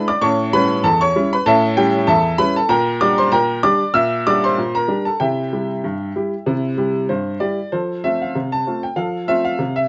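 Playful and lively, this short excerpt of ragtime piano moves at 96 BPM in 2/4 with a light swing on the sixteenths, set in F major and tuned a touch sharp at A4 = 445 Hz. A clear, woody upright piano plays solo and up front across a range from E2 to E6, its slightly detuned, natural voice passing through A7, Gm/Bb and C before settling on F at 7.7 seconds, where a new section begins. Moderate studio reverb gives the sound a sense of room, while vinyl crackle and a rolled-off top end lend it the feel of an old record.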